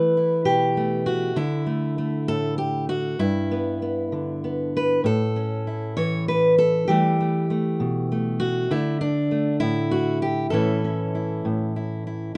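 A fingerpicked steel-string acoustic guitar opens alone and carries this short folk excerpt by itself, unfolding in a straight 6/8 with a hopeful, gentle mood. Its tone is warm and up front, with an auditorium-like body and a light reverb around it, as the harmony moves through Em, Dsus2, G6 and A before circling back to close on A at 10.5 seconds.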